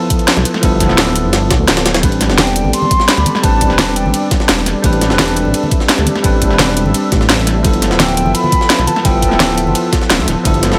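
A mellow, hollow silver concert flute carries the melody in this dreamy, lush liquid drum and bass excerpt. Its pure, tongued tone with vibrato enters at 2.4 seconds and returns at 8.0 seconds through a digital delay. Beneath it, a barky, bell-like tine electric piano plays clean accompaniment with dub echo, while a thick, detuned unison pad holds chorused, phased chords in the background with sidechain pumping. A deep, rumbling detuned saw bass sits up front with tube saturation, alongside an overdriven, knocking electronic kick that drops out briefly at 1.7 seconds. The main drum kit brings a cracking snare, bright hats and ride cymbal, layered with a gritty, pitched-up jungle sampler-style kit with a high-tuned snare further back, while soft-handed acoustic congas add color as the harmony moves from G13 to Am11 and back to G13, all in light reverb and digital ambience.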